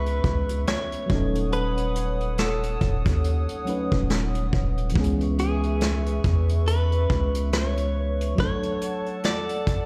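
Bathed in large studio reverb, as if played through a big sound system in a bare room, this sensual, late-night contemporary R&B excerpt, with its swung sixteenth-note feel, sets a clean, compressed, direct-recorded electric guitar melody with tape echo over a round, dark FM electric piano with chorus, a hollow, flute-like pad with chorus and sidechain pumping, a deep sine 808-style bass that decays and stops at 8.3 seconds, a bell-like celesta heard very softly only until 2.4 seconds, and an up-front vintage brush kit with a punchy kick and rolled-off top.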